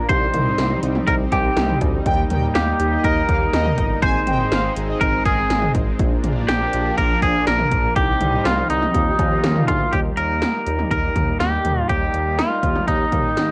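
This bright, nostalgic synth-pop excerpt opens with a twangy, clean electric guitar carrying the melody up front over a lush, warbling unison pad that holds sustained chords in the background, both colored by cassette tape. Almost at once, at a straight 122 BPM in 4/4 and Eb major, punchy 80s electronic pad drums arrive with gated reverb on the snare and toms, metallic hi-hats, cowbell and kick. A smooth, nasal synth bass joins them, along with a mellow, round synth brass playing accompaniment in the background. From 2.1 to 5.3 seconds an analog synth brass adds a bold, fat second line, wave-folded and ring-modulated with a filter sweep, chorus, analog delay and plate reverb. The chords move from Cm through Eb, Ab and Bb before settling on Eb, and the mellow brass drops out at 9.8 seconds as a new section begins. The sound carries the light reverb of a home recording on cassette.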